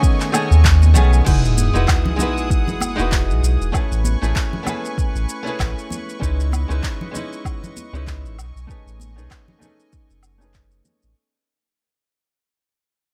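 Sunset chillout at 97 BPM in 4/4, with a swung sixteenth-note feel and a warm, wistful mood, this excerpt is cut from a longer piece. A barely audible, fingerpicked nylon-string guitar carries the melody only for the opening 0.6 seconds, while a dark, clean hollow-body archtop guitar plays accompaniment throughout, roughened by vintage 12-bit sampler grit and shaped by a low-pass filter and digital delay. A clear studio string section holds soft-attack, sul tasto chords that float above, and a round sine sub bass enters at 0.5 seconds, sitting up front as the loudest part. The drums pair a deep, layered electronic kick with a produced deep house kit of crash cymbal, handclaps, shaker and woodblock, while bright, hard-handed congas sit in the background. At 1.3 seconds an electronic sub drop lands as an impact, filter sweeps begin on the sub bass and the archtop guitar, and the music fades out over the chords Emaj9, Amaj9, C#m9 and B13 in a dry sound.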